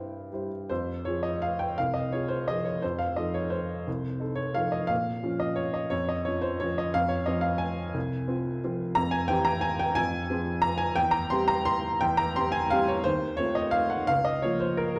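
A dark, reverberant recital-hall sound with a 1.4-second decay surrounds a clear, woody upright piano placed up front, its action noise audible and intimate. This nostalgic, elegant classical waltz in F minor moves in 3/4 at 154-187 BPM with a rubato feel, the solo piano ranging from C2 to C6 across a 15-second fragment cut from a longer piece. The harmony circles F minor through F7 and B-flat minor, passing C over F and C over E before arriving on B-flat minor over D-flat at 14.1 seconds.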